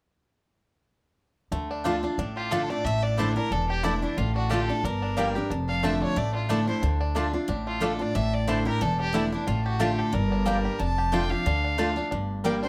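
Haunting and driving, this short minor-key bluegrass cut swings its eighth notes at a brisk clip over a dark, searching progression that keeps circling back through suspended and minor chords. The twangy, percussive banjo carries the melody, entering at 1.5 seconds together with the picked steel-string acoustic guitar and the upright bass. The guitar sits up front with a full-bodied dreadnought tone, while the plucked upright bass adds a thumpy, woody low end from its gut strings. The mandolin joins at 1.8 seconds with warm, woody double-string stabs. A clear, earthy fiddle enters at 2.4 seconds, its bowed line carrying the melody alongside the banjo with light vibrato. Light reverb gives the small string band a sense of space.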